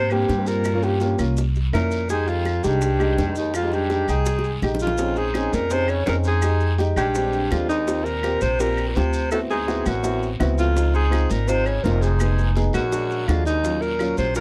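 A driving, straight four-beat Afro-Cuban jazz groove rides on thumpy, gut-strung pizzicato upright bass up front, with tight, high-tuned bongos struck with hard hands and kept very quiet, while woody claves, grainy maracas and a raspy guiro sit in the background. A breathy, whispered alto saxophone with vibrato and plate reverb carries the sultry melody over a vintage baritone saxophone second line, as a slightly detuned upright piano adds smooth, warm jazz chords. After a drum fill from 4.3 seconds, a new section begins at 5.0 seconds in this cut from a longer piece, set in a dark, lightly reverberant production.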